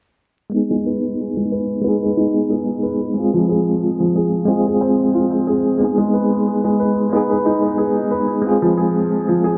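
A bell-like tine electric piano sits up front in this dark, cinematic trip hop fragment, its clean, bright tone shaped by tremolo, a low-pass filter and tape echo as it carries the accompaniment from 0.5 seconds. Just after, at 0.7 seconds, a felt-muted upright piano joins with arpeggios, soft and intimate, its thin felt and audible action noise giving it a close, mellow presence alongside the electric piano. Both parts run under a filter sweep through to 9.6 seconds, and the harmony moves between G# minor and F minor. The swung sixteenth-note feel gives the groove a loose, drifting lilt. An echo-heavy mix, vinyl crackle and a moderate echo chamber reverb with small room ambience wrap the whole in a hazy, nocturnal atmosphere, as though this brief passage were lifted from a longer piece.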